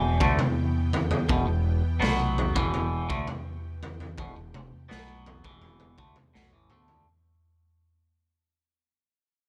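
A steady, straight 4/4 pulse at 83 BPM drives this hypnotic, mysterious psychedelic rock excerpt in E minor, with a raw garage drum kit sitting up front, its punchy kick, medium-tuned snare and toms sounding gritty and saturated in a small, pumping room, entering at 0.2 seconds and closing with a drum fill from 6.3 seconds. A twangy, clean electric guitar riff with phaser shares the foreground while a growling, overdriven picked bass anchors the low end, and a mellow string machine cello patch with ensemble chorus holds soft, sustained chords in the background. The whole passage sits on a single Em chord under light reverb and fades out across its full length.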